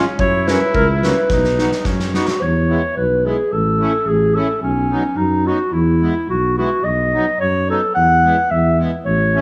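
A bouncy 2/4 pulse at 108 BPM drives this jolly alpine dance band fragment in E major, cut from a longer piece. A dark, roomy clarinet carries the melody up front in a classical style, set against a dark tuba bass with light vibrato, a soft attack and a smooth top that sits just as close. A reedy accordion with slow beating holds down the accompaniment throughout, while a trumpet with light vibrato adds a brief second line in its low register. A distant acoustic drum kit, with a punchy kick, a medium-tuned snare and a rolled-off top, plays only through the opening and closes it with a fill from 1.3 to 2.4 seconds. From 2.4 seconds, trumpet and drums drop away, leaving clarinet, tuba and accordion to carry the second section through a simple cycle of E, A and B chords, all bathed in a moderate recital hall reverb.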